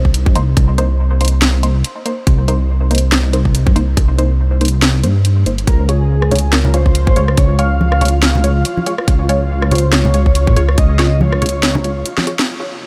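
Swung half-time at 141 BPM, this brooding, cavernous deep dubstep cut pairs an overdriven, tight electronic kick and cracking garage snare, hi-hat and rim click up front with a rumbling, detuned saw bass moving between G1 and Bb2 under muted, phaser-tinged dub chord stabs over Cm7, before a breathy flute-like lead with chorus and dub echo arrives at 5.7 s on Db, joined by thick-skinned, low-tuned congas and a flickering granular texture in the background, while a nasal bowed-like drone surfaces only at 12.7 s after a closing drum fill and band accent.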